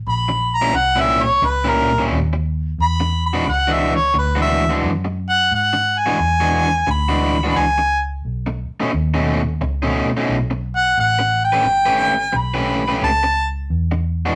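A dark, round electric bass opens this swaggering electric blues shuffle, a short excerpt from a longer piece, with a harmonica entering at 0.1 seconds and a guitar at 0.3 seconds. The harmonica carries the melody up front as a jazz-style solo, its overdriven tone smooth at the top and shaded by light vibrato and scooped notes. Beneath it, the crunchy, bright guitar plays a picked riff, also up front, while the foam-muted bass sits lower in the mix with an amped, vintage character. The rollicking swung feel moves from a diminished chord into ninth chords, E9, B9 and A9, before returning to E9, and the harmonica stops at 13.5 seconds. The rough rehearsal-room sound carries a saturated glow and a moderate studio reverb.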